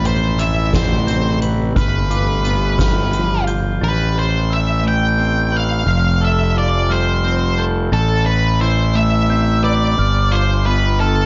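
This melancholic, brooding post-rock fragment opens at once on a growly, punchy fuzz bass played up front with fingers, a picked octave-fuzz lead guitar carrying the melody with distortion and slapback echo, and a deep, detuned ambient pad holding slow-attack chords beneath a chorus shimmer. In the background, a dark, clean electric guitar picks arpeggios and a glockenspiel struck with rubber mallets adds mellow, bell-like, airy arpeggios high above, both touched by slapback echo. A soft-mallet drum kit with a boomy kick, medium-tuned snare and hi-hat enters at 0.1 seconds with a natural hall sound, then falls away at 3.6 seconds, and the pad ends at 3.8 seconds. The rest of the fragment leaves the overdriven bass, the fuzz lead and the two arpeggiated parts to carry the slow 6/8 pulse at 58 BPM in A minor, circling Amadd9, G7 and Fadd9. The studio reverb and a dusky, warm mix with its top end rolled off keep the sound heavy and shadowed.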